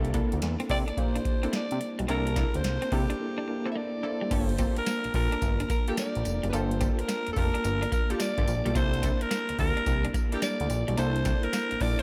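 Bouncy and punchy, this new jack swing R&B piece rides a swung groove from a booming analog drum machine with a deep kick, crisp snare and metallic hats, alongside a fat, detuned sawtooth bass placed up front. A mellow tine electric piano supplies accompaniment, while a clean, picked electric guitar riff with lush chorus and funky polysynth stabs sit in the background of a dreamy mix soaked in cathedral reverb. From 0.7 s a raspy, growling alto saxophone carries a jazz-style melody through tape echo, and a break at 3.2 s leads into a new section at 4.3 s.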